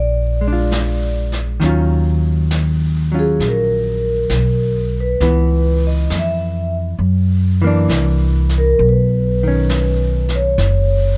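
Over a lazy eighth-note swing in four, this intimate, smoky jazz ballad fragment opens with an up-front, woody pizzicato upright bass and a ringing, airy vibraphone under soft mallets with slow motor vibrato; a dark, clean hollow-body guitar slips in at 0.4 seconds and a distant, roomy brush kit at 0.7 seconds, before the vibraphone takes a mellow solo from 1.6 seconds over minor-ninth and augmented-seventh harmony in a dry, close-sounding space.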